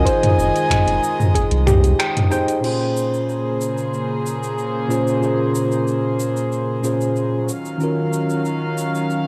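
A relaxed, smooth sunset chillout excerpt in Bb minor at 93 BPM opens with a breathy jazz flute melody over clean tine electric piano and dark, nasal bowed chamber strings, joined at once by a round sine sub bass, a soft chorused pluck playing arpeggios, a gritty, thumpy electronic kick and an overdriven deep house kit with metallic hats, snaps and shaker; the flute, bass and kick fall away before a brief break and band accent at 2.0 seconds, after which the electric piano, strings and kit carry the Bbm9 and Ebm9 chords with a hazy cassette-tape sheen and spring reverb.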